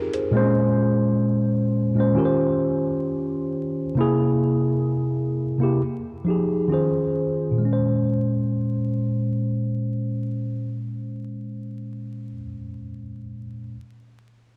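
Reflective and nostalgic, this slow hip hop fragment at 66 BPM sits in Bb dorian with a lightly swung 16th-note feel, cut from a longer piece. A single mellow tine electric piano, clean and up front with a cassette tape colour, carries the accompaniment from 0.0 to 13.8 s through chords such as Bbm9, Eb13, C7b13 and Fm9, shifting to a new section at 7.6 s. The dreamy mix is soaked in a lush hall reverb and dusted with vinyl crackle.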